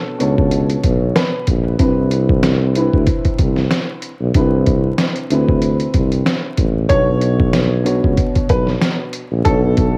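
Moody and dark, this boom-bap hip-hop excerpt sets a muffled, pitched-down sampler-style drum kit with a thumpy kick under a mellow, soft-attack tuba bass and a boxy, woody upright piano accompaniment moving from Bmadd9 to Cmaj7. Meanwhile, a clear second upright piano with short sustain and analog delay sketches brief melody phrases at 0.0 and 6.9 seconds, all wrapped in cassette tape texture, vinyl crackle and small-room ambience.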